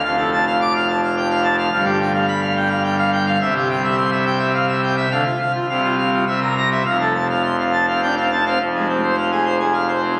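In a straight 3/4 at 106 BPM, this brilliant, jubilant classical organ toccata in F major is cut from a longer piece. A solo pipe organ on full organ, with mixtures and a majestic, romantic voicing, sits up front and spans F1 to D6, moving through G7 and C to a cadence on F before turning to F minor at 8.6 seconds. Its sound blooms in a cathedral reverb with a 5.0-second decay, captured on a phone in the room.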